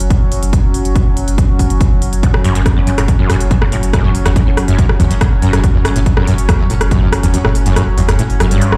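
A thick, saturated sub bass, a detuned, warbling analog drone and an overdriven techno kit of smooth hi-hats and rim clicks open this hypnotic, driving peak-time techno excerpt at 141 BPM on an F#5 chord; a heavy, up-front electronic kick joins at 0.1 seconds, and a squelchy, gritty acid bass riff with chorus and delay enters at 2.2 seconds. Sidechain pumping moves the sub bass, drone and riff, and the kick drops out at 7.3 seconds, all heard as if played on a big sound system in a bare room with a large reverb.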